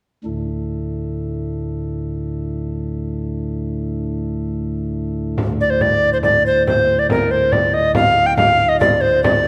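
Mysterious and driving, this medieval dance in D minor moves at 140 BPM in a straight 3/4, cut from a longer piece and opening on a low drone from a chamber organ whose light, sparkling flute stops carry a chiffy, up-front voicing. At 5.4 seconds a small frame drum joins with soft hands and a live acoustic room sound, and at 5.6 seconds a tenor recorder takes the melody, airy and woody with vibrato, a crisp chiff on each attack and lifted highs that place it clearly in front. A wet scoring-stage reverb lends the whole a spacious glow.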